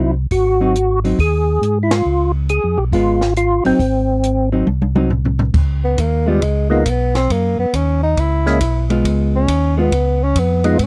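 A bluesy, soulful soul jazz organ trio excerpt swings at 137 BPM in Db mixolydian, opening with a fat, percussive tonewheel organ melody with key click, chorus vibrato and slow rotary speaker over a round, lightly overdriven organ bass and a clean, hollow-body jazz guitar's dark accompaniment, joined at 0.3 seconds by a dry cocktail drum kit with a high-tuned snare and tight kick that punctuates a band accent and plays a fill before a breathy, subtone tenor saxophone solo enters at 5.8 seconds, all captured in a close, dry 1970s-style studio sound.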